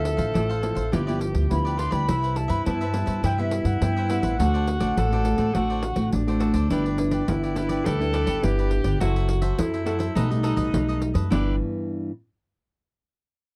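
A dry, close studio sound in a 1970s manner frames this playful, lively excerpt of samba and choro in a straight 4/4. A reedy baroque flute, pure and bright with vibrato and a soft attack, carries the melody from a distance before stopping at 6.1 seconds. A breathy tenor saxophone plays a second line in a mellow, whispered subtone, with scooped notes and an intimate jazz feel. Crisp picked cavaquinho and a dark, fingerpicked nylon-string guitar with old strings share the accompaniment, the guitar ringing on alone until 12.1 seconds. Underneath, a woody, thumpy pizzicato upright bass on gut strings sits up front, while a jingly pandeiro played with soft hands keeps the pulse. The harmony moves from Dm9 through G6, Cmaj7 and D7, then past F#m7b5 and B7b13 before settling back on G6.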